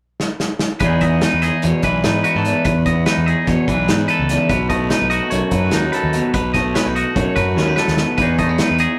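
A drum fill from the loose indie kit opens this playful, wistful math rock and midwest emo excerpt at 293 BPM in 9/8. At 0.8 seconds two twangy electric guitars enter in E major, one comping chords moving from Emaj7 to B7 and the other picking bright, scooped arpeggios up front, over a growly fuzz bass and punchy, rolled-off drums in a pumping room. The rough rehearsal-room sound carries tube saturation and moderate reverb, with a second fill around 7.6 seconds before the return to Emaj7.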